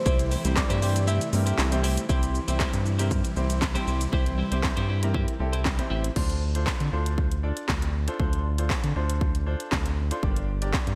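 A gentle, keys-like FM synth lead with chorus, vibrato and digital delay opens this confident, driving dance-pop excerpt, playing a brief melody over a huge, lush wall of detuned supersaw chords that sit in the background and pump against the sidechain. Almost at once a clear, polished concert grand piano, a clean, compressed twelve-string electric guitar riff and a deep, round analog bass join. The bass sits up front with a nasal, dark edge and the same sidechain pumping. A punchy, layered house drum kit drives everything with a cracking snare, handclaps, hi-hat, shaker and crash cymbal, overdriven and given gated reverb, and its kick drops out between 1.1 and 2.1 seconds. The supersaw chords and guitar stop at 6.1 seconds, leaving piano, bass and drums to carry the harmony as it moves from C to Dm7 and then Gm. The production is bright in a 1980s digital style, with light reverb.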